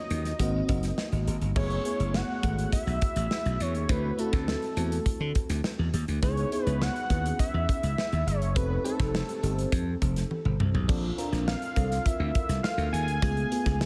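A dreamy mix soaked in a lush hall reverb gives this slick, urban slice of polished 1980s jazz-funk pop a glossy, spacious sheen, cut from a longer piece. At 103 BPM in a straight 4/4, a modern studio drum kit with a tight kick and medium-tuned snare sits up front alongside a growly, punchy slap bass that anchors the low end. An FM electric piano layered with a soft pad supplies mellow, detuned accompaniment coloured by phaser and subtle chorus, and it plays a short fill between 0.7 and 1.6 seconds. Over this, a fat analog sawtooth lead with a sub octave, ring modulation and vibrato carries the melody through chorus and delay. The chords move through rich extended colours such as F#m11, D9, C#m9 and A#maj7, with a drum fill at 10.3 seconds before the harmony settles on C#7b13.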